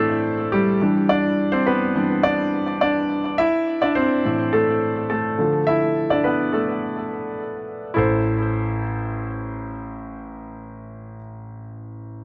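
A clear, up-front concert grand piano plays alone through this dramatic, driving pop excerpt, its deep bass, short sustain and polished tone treated with digital delay and set in light reverb within a dark production, moving from A minor through Em7 and Dm before returning to Am at 8.0 seconds.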